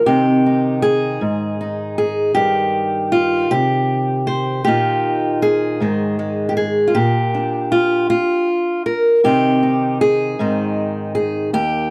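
Nostalgic and warm, this short folk passage, cut from a longer piece, is carried by a single fingerpicked steel-string acoustic guitar playing alone from 0.0 to 11.9 seconds. The guitar sits up front in the mix, with a concert-instrument fullness and finger squeak audible on the strings. It moves in an unhurried, straight 6/8 lilt, ranging from a low Eb2 up to C5. The harmony circles through Cm, Ab5, Eb/G, Eb/Bb and Bb, settling back on Cm at 9.2 seconds before closing on Ab. The sound is dry and close, in the manner of a 1970s studio recording, touched with only light reverb.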